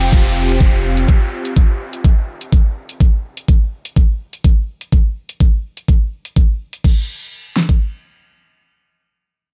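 Uplifting and expansive, this progressive house excerpt at 125 BPM in 4/4 opens on a lush, airy, detuned unison pad holding an Fsus2 chord with chorus, sidechain pumping and a filter sweep until 3.0 seconds, over a brief deep, saturated sub bass and a falling downlifter, while an overdriven, up-front electronic drum kit with a knocking kick and fat snare drives on to 7.8 seconds alongside crash cymbal and warm hats, all in a dry, close-sounding mix.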